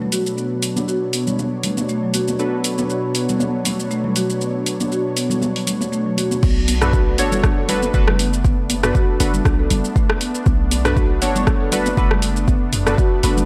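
A swung afro house groove at 119 BPM in 4/4 carries this spiritual, driving cut from a longer piece in B minor, resting on a Bm7 chord. From the opening, a smooth, warbling analog pad holds sustained chords under a filter sweep with chorus and sidechain pumping. A woody marimba played with soft mallets spins airy arpeggios through tape echo and a low-pass filter, while detuned sawtooth keys add short stabs colored by chorus and phaser. Bright, high-tuned congas sit in the background beside an overdriven deep house kit of hi-hat, shaker, rim click, toms and crash cymbal. At 6.4 seconds the drop lands as a boomy 808-style bass and a deep, layered electronic kick, up front and overdriven, join the groove, all within a light digital ambience.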